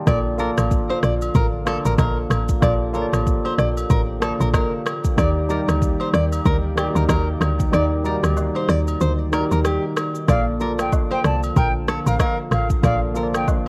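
A worn, slightly out-of-tune tine electric piano, lightly overdriven through a combo amp, opens this sunny, romantic afrobeats passage cut from a longer piece, with a smooth, vintage analog pad in chorus sustaining chords in the background. At 94 BPM in 4/4 with a swung sixteenth-note feel, a produced afro-pop drum kit joins almost at once, its deep kick, rim click and shaker up front beside a punchy, woody log drum bass with a fast, decaying attack. Agogo bells, woodblock, egg shaker and group handclaps add a live-room acoustic sparkle. A full-bodied, fingerpicked nylon-string guitar riff carries a tape echo and audible finger squeak over chords moving from Bbmaj7 to Ebmaj7 in Bb major. The kick drops out from 7.7 to 10.3 seconds, and at 10.3 seconds a pure, straight-toned concert flute with a crisp attack enters on a short melody, also trailed by tape echo, as the harmony returns to Bbmaj7. 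The whole track sits in a small, lightly reverberant room and wears the warbling pitch drift of old cassette tape.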